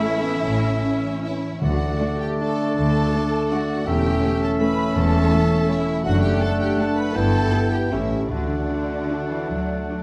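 Sweeping and elegant, this classical orchestral ballroom waltz in D major moves in 3/4 at a flexible, rubato pace of 143-178 BPM, heard as a 10-second excerpt cut from a longer piece. A rich, close chamber violin section carries the melody with expressive vibrato, while a second violin section, focused and smooth on top, shapes a lower line beneath it. Supporting lines come from a very quiet, pure-toned flute ensemble with soft attacks, a distant oboe with light vibrato, and a dark, roomy clarinet. A soft-edged bassoon and a background viola section fill the accompaniment, a mellow French horn section holds sustained chords from 0.1 seconds, and a thumb-plucked concert harp rings out arpeggios across its range. Cellos and double basses anchor the bass from 0.4 seconds, and round, soft-mallet timpani on calf heads sound briefly at 1.6 seconds as the harmony moves from A to D before the phrase settles back on D. 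A moderate recital hall reverb gives the ensemble an open, graceful sense of space.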